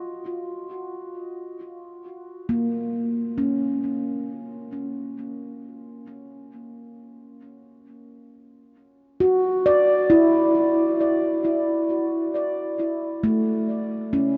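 In a straight, unhurried 4/4, this weightless ambient fragment, cut from a longer piece, features a solo handpan placed up front with a ringing, mellow stainless-steel tone, soft fingertip touch and delay, drifting from A#m to Dmaj7 at 4.7 seconds inside a huge, dreamy reverb that soaks the softly rounded mix.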